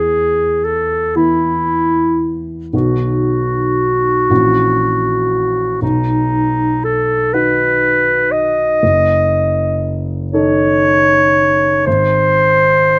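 A clear clarinet and a dark grand piano begin together, the clarinet carrying a melancholic, elegiac melody in a poised classical manner while the piano supports it from below. This is a short slice of a romantic duo in a slow, lilting 6/8, played with rubato so the beats stretch and settle unevenly. The clarinet sits up front as the solo voice, its line staying within a fairly compact middle register. The piano, also close and present, has a mellow, smooth and slightly vintage character, with long sustain that lets its low bass notes linger beneath the melody. The harmony moves from E through B, F#7/A# and a D#dim/F# before arriving on G# near 11.9 seconds. A light reverb gives the pair a gentle sense of space.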